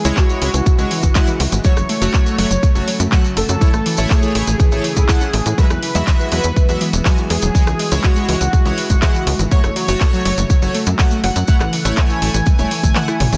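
Progressive house at 122 BPM in F# minor, bittersweet and expansive, where a punchy, up-front electronic kick and a tight, nasal sawtooth sequencer bass pumping with the sidechain drive a house kit of handclaps, bright hats, rim clicks and toms with soft clipping on the snare, grainy vintage maracas, crystalline detuned wavetable arpeggios and retro, glossy polysynth stabs, both carrying dub echo, over a very quiet morphing pad, while a thick, bold unison lead with vibrato, subtle chorus and dub echo sings the melody alongside a dark, round pluck through C#m, F#m, A and Eadd9, before a drum fill from 12.5 seconds and the kick dropping out at 13.0 seconds close this dense, heavily limited excerpt.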